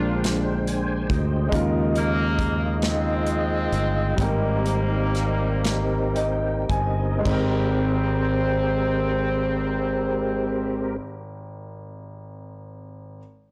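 Hopeful and reverent, this slow gospel piece in 6/8 and Ab major moves at 35-47 BPM as a tight, jazz-style horn section carries a soft-attacked melody with light vibrato over clean tonewheel organ chords through a slow rotary speaker, an open concert grand piano in the background, a round, up-front fingered electric bass and a polished studio drum kit with a punchy kick, while the tempo slows from 1.5 seconds through Bb13, Eb9sus4 and Abmaj9 harmony, organ and piano add fills from 5.6 seconds, and the piano rings on alone after 11.0 seconds in a large reverberant, blown-out, overdriven recording cut from a longer piece.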